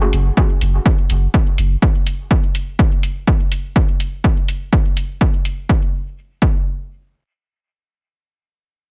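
A hypnotic, hazy dub techno fragment, cut from a longer piece, moves in a straight 4/4 and sits in a digital ambience. A soft dub sub bass opens almost at once, deep and round with a fast attack and sustained tone, pumping under sidechain compression before it stops at 1.8 seconds. An electronic hi-hat enters alongside it, analog in character and overdriven, re-recorded in a large room yet kept up front. The punchy electronic kick drum joins at 0.4 seconds, also overdriven and carrying that big-room character, and it outlasts the hi-hat to play on its own until 6.6 seconds. The passage shifts into a second section at 5.7 seconds, leaving the ambience to carry the closing stretch.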